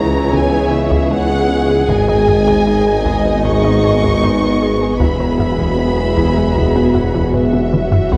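Bathed in a wet scoring-stage reverb, this vast, futuristic cinematic cue from a hybrid orchestral and electronic film score moves at 77 BPM over C#m7, G#m and Eadd9 chords, with a dark, distant violin section singing the expressive melody above a smooth-topped second violin line and softly gliding violas, while mellow French horns and very quiet trombones hold tight sustained chords, a detuned, chorused analog pluck spins faint arpeggios, and woody cellos, focused double basses, a punchy pitch-dropping sub bass and a background tuba anchor the low end, as a heavy-sticked taiko ensemble enters at 0.3 s and plays a fill at 7.3 s.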